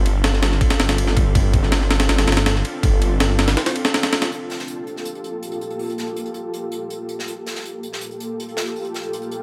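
Frenetic yet atmospheric, this drum and bass and jungle excerpt sets an ethereal pad of sustained chords, softened by chorus, reverb and tremolo and later filter-swept, over a thick, beating detuned saw bass that drops out at 3.6 seconds and a gritty, compressed breakbeat kit of thumpy kick, ride and high-tuned snare, before a polished acoustic kit played with bundle sticks takes over on hi-hat and snare at 4.3 seconds as the harmony moves from F6/G to Gm9 in a small room.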